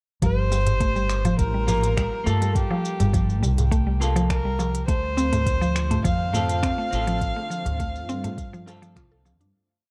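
This short, mystical and earthy organic downtempo piece in G minor opens at 0.2 s with a full groove at 103 BPM in a straight 4/4: a woody, growly pizzicato upright bass sits up front with long gliding notes over a soft electronic kick, while a layered beat of crisp closed hats, shaker and finger snaps ticks beneath. A round, mallet-like FM synth pluck spins a bright, chorused arpeggio through tape echo, its 10-step loop drifting against the bar under a filter sweep, as a bronze singing bowl rings a very quiet, meditative held note with slow beating. A rich kamancheh carries the melody in call-like motifs, its bowed line marked by light vibrato and portamento and trailed by digital delay, while a metal-shell darbuka adds soft, crisp hand strokes from 0.5 s. A clean semi-hollow electric guitar drops sparse, echoing rootless chord stabs with sidechain pumping, and at 5.4 s a tense, detuned sawtooth drone settles into the background with phaser, vibrato and its own reverb as the harmony moves from Gm9 to Dm7. 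The dark production, with light reverb and small-room ambience, fades out from 6.4 s to the end at 9.5 s.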